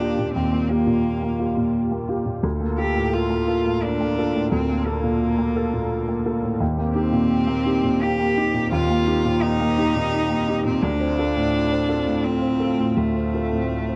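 Tender and intimate, this neoclassical fragment for piano and strings moves at a rubato 86 BPM in 3/4, in Bb major tuned to A4 = 441 Hz, drifting through Ebadd9, Bbmaj7/D, Cm7/Eb and Dm7. A natural, up-front grand piano carries the accompaniment. A single bowed cello sings a smooth, even second line with vibrato and a touch of tape echo. Behind them, a mellow, detuned sawtooth pad holds brassy sustained chords with a soft attack, chorus, a filter swell and a moving notch. It all sits in a dry, close 1970s-style studio sound with light reverb.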